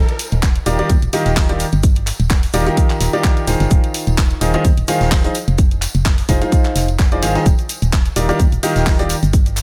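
Piano house at 128 BPM in Eb major, this feel-good, joyful cut swings lightly on the 16ths. A hollow, dark organ-like FM bass with sidechain pumping starts at 0.0 s, joined by a layered house kit of cabasa, handclaps and hi-hat, a very quiet close tambourine, a faint brushed vintage kit with a rolled-off top, and then a punchy, up-front electronic kick. From 0.7 s a clear, woody upright piano riff rides over Ebmaj9, Ab6/Eb and Fm7, coloured by 12-bit sampler grit, tape echo and pumping, all set in a present studio ambience.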